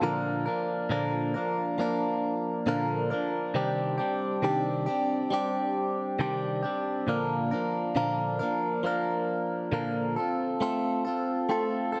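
A clean electric guitar, recorded direct and picked with a bright, twangy edge, carries this short pop passage entirely on its own from 0.0 to 12.0 seconds. Its tone is compressed and placed up front, colored by a phaser that adds a gentle shimmer to the sound. The mood is heartfelt and tender, with a straight, unhurried feel in common time. The harmony moves from Bb to Cmadd9 at 3.6 seconds, back to Bb, and settles on F/A near the close. A lush hall reverb with a long tail surrounds the guitar, giving this excerpt, cut from a longer piece, a spacious and intimate glow.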